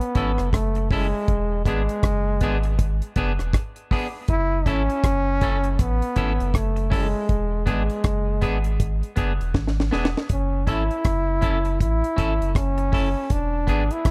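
This is a short excerpt from a longer roots reggae piece, opening at once with a clear trombone melody and a deep, dry reggae drum kit that brings hi-hat, rim click, a high-tuned snare and a tight kick. At 80 BPM in 4/4 with a swung sixteenth feel, the mood is meditative and hypnotic, circling between F#m7 and E7 in F# minor. The trombone sits up front as the solo voice, smooth on top with vibrato and a tape echo trailing its lines. A round, sine-like sub bass with a fast attack and sustained notes holds the low end from 0.2 seconds, while a bright, clean semi-hollow electric guitar picks its accompaniment through spring reverb and tape echo. A drum fill at 9.5 seconds marks the turn back to F#m7 at 10.3 seconds. The overall sound is close and dry, with little room reverb around the parts.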